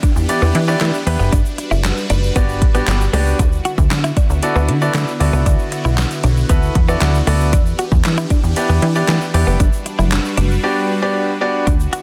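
This summery, carefree dance-pop drop opens at once on a full groove at 116 BPM in a straight 4/4: a punchy, layered electronic drum kit with a deep, softly clipped snare, metallic hi-hats and handclaps sits up front, while a grainy egg shaker ticks quietly in the background. A lush, detuned supersaw pad holds sustained chords through a phaser and a pumping sidechain, and a clean, direct-recorded electric guitar plays a picked, compressed riff coloured by analog chorus. Moments later a plucky, funky analog bass arrives with a fast-attack filter pluck, followed by a polished grand piano accompaniment; both carry the same sidechain pumping. The harmony cycles through Em7, Gmaj7 and D69, with the piano breaking into a brief fill around 6.5 seconds. The mix is dense, dry and heavily limited in a modern style, and the music drops into a silent gap at 10.6 seconds, as if cut from a longer track.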